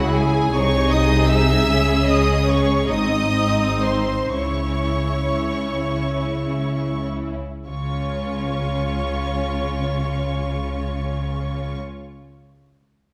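A lush, up-front double bass section anchors this yearning, elegiac slow movement for string orchestra, its bowed, smooth low line sitting beneath the ensemble throughout the brief passage cut from a longer piece. Above it, the first violins carry the melody high in their range with a focused vibrato, while the second violins trace a smooth, even line that sounds more distant. The violas fill in the accompaniment from the middle, and an intense cello section adds weight from the background alongside the basses. In a rubato 6/8 at roughly 33-54 BPM in dotted quarters, the music stays in C# minor and gradually slows from 0.5 to 7.7 seconds, then settles onto a C# major chord at 7.7 seconds as a new section begins. A generous stone-room reverb gives the strings a rich, resonant glow.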